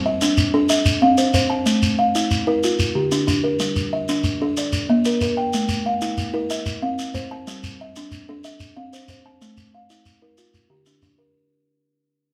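A straight 12/8 pulse at 124 BPM carries this rippling, warm fragment of southern African traditional music, an mbira-style interlocking cycle in G equiheptatonic where a buzzing, woody kalimba spins hollow-toned arpeggios between D3 and A5 while a grainy shekere keeps time in moderate studio reverb, and the whole passage fades out over its 11.3 seconds.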